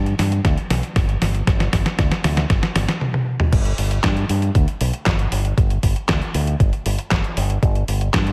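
A light reverb surrounds this short, sunny italo disco cut at 117 BPM in G major, built for dancing on a straight 4/4 pulse. Up front, a bright, punchy fingered electric bass with an envelope filter and tube saturation moves between G1 and G2, beside a detuned 8-bit digital drum machine whose overdriven, medium-tuned snare, handclaps, hi-hat, toms and crash cymbal sound re-recorded in a large room. A thumpy, overdriven electronic kick drum enters at 0.4 seconds, and drum fills carry the opening until a new section begins at 3.5 seconds.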